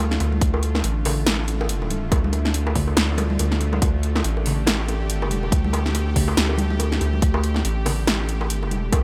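A half-time 4/4 groove at 141 BPM, swung 57% on the 16ths, drives this brooding, cavernous deep dubstep excerpt in D minor, tuned slightly flat to A4 = 437 Hz and resting on a single Dm chord. An overdriven electronic kick with a deep, layered thump arrives at 0.4 seconds, joining an up-front, overdriven drum kit of punchy snare and metallic hi-hats re-recorded in a large room, while bright, vintage, band-limited bongos and congas ride a dub echo. Underneath, a round, soft sub bass with tube saturation sits up front, and a tense, string-like sawtooth drone with slow attack, vibrato, a noisy edge and its own reverb sustains chords over an otherwise dry mix.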